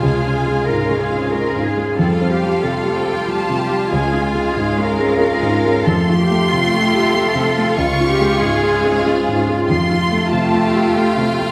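Cinematic and tender yet uplifting, this 11.5-second excerpt from a longer piece moves at 94 BPM in a rubato 3/4, tuned to A4 = 439 Hz, alternating between Db and Fadd9 chords every couple of seconds. A lush violin section carries the vibrato-rich melody high above while a clear, close second violin line sits beneath it, a smooth viola section and an even cello section fill out the accompaniment and bass, and a dark, mellow grand piano with short sustain stands up front. A bright, ringing concert harp plays fingerpicked arpeggios in the background, and the whole ensemble sits in a wet scoring-stage reverb of 1.9 seconds.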